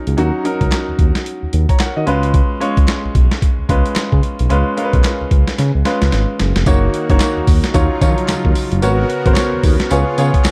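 A clear, polished baby grand piano opens this slick, punchy new jack swing R&B clip with a swung 16th feel. Almost at once it is joined by a gritty, pitched-down boom bap drum kit that sits up front with a thumpy kick, handclaps, hi-hat, snare and tambourine, and by a smooth sawtooth synth bass with vibrato. A drum fill at 5.6 seconds then leads into a brassy, nasal analog pad with chorus that slips in behind them at 6.7 seconds over Gb6 and Ebm9 chords, the production dry and dark.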